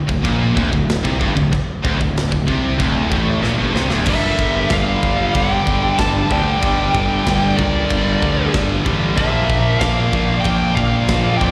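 A growly, fuzz-overdriven picked bass sits up front beside a big-room, gritty metal drum kit and three bright rhythm guitars (a high-gain one with slapback echo in the background, plus a very quiet tight one and a very quiet scooped, double-tracked one) all riffing in an epic, heavy metal excerpt that passes through a drum fill at 3.4 seconds before a dark high-gain lead guitar with slapback and tape echo takes the melody at 4.1 seconds, shadowed by a softer second lead line in the background, all heard as a live gig through the venue's PA with recital-hall reverb and lossy compression artefacts.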